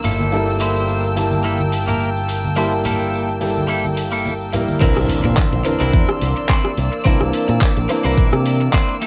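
A lightly swung 16th-note groove at 107 BPM in 4/4 drives this sleek, sensual nu-disco passage, cut from a longer piece, as it moves from Gm69 to C9. A twangy, clean electric guitar plays a riff over a boxy grand piano with sidechain pumping, a dark, reedy violin section holding distant bowed chords through vintage 12-bit grit, a bright picked bass with an envelope filter, and an overdriven pop kit with handclaps, shaker and rim clicks. Tambourine and congas play until 4.8 s, when a knocking, up-front electronic kick lands for the drop and a very quiet impact sounds at 5.0 s, all set in light reverb with the soft haze of a home cassette recording.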